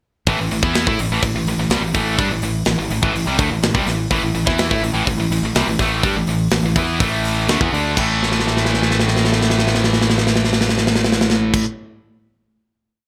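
The recording has a bright 1980s-style digital sheen, with moderate plate reverb and a small room ambience around the band. This short, complete hard rock piece in A minor moves at 125 BPM in a straight 4/4 and sounds aggressive and heavy from its start at 0.3 seconds. Two picked electric guitars carry the power-chord riff: a tight distorted guitar sits up front, while a crunchy overdriven guitar with subtle chorus stays in the background. A punchy, growly fingered electric bass drives eighth notes beneath them, doubling the guitar riff. The tight metal drum kit, with its medium-tuned snare, kick, hi-hat and crash cymbal under gated reverb, sits up front with a big rock groove. The drums play a fill from 8.2 seconds as the band holds a final A5 chord that begins at 8.0 seconds.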